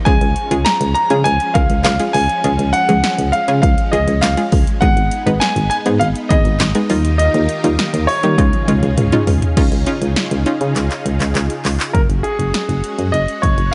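Synth-pop with a nostalgic, wistful mood, where an intimate grand piano carries the melody up front with slapback echo over shimmering vintage string-machine chords, a round, chorused analog pluck that drops out at 11.4 seconds, a punchy FM bass, and a dry, punchy analog drum machine whose fills at 8.4 and 10.8 seconds lead into new sections, all in light digital ambience.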